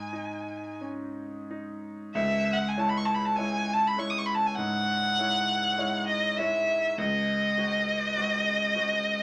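The rhythm moves at a slow 50 BPM in 4/4, stretched and pulled by rubato, giving this romantic classical duo in C# minor an elegiac, yearning character. A single bowed violin carries the melody between D#5 and D#6, its rich tone shaded with vibrato and an even, smooth line that sounds up front yet faintly distant. Beneath it, a bright grand piano supplies the accompaniment from C#2 to C#5, brilliant and vintage in color with long sustain, sitting somewhat lower in level than the violin. The harmony rests on G#5 at the start, settles onto C#m as a new passage begins at 2.1 s, and moves to G#7/C# at 7.0 s. Both instruments play throughout this fragment of a longer piece, set in a wet studio reverb with a decay time of 0.8 s.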